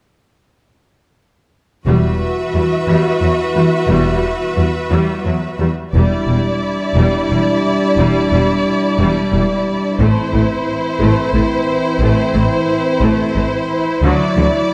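Dark, moderately reverberant scoring-stage sound frames this dramatic, epic cinematic passage in E minor at a slow 59 BPM in 6/8: from 1.9 s, double basses with light vibrato and rich cellos anchor the bass, mellow French horns hold sustained chords, focused violas accompany, and distant, intense violins carry a second line, until at 5.9 s a close, lush violin melody enters and the music builds to 14.7 s over chords moving from Em7 to Am and Dadd9.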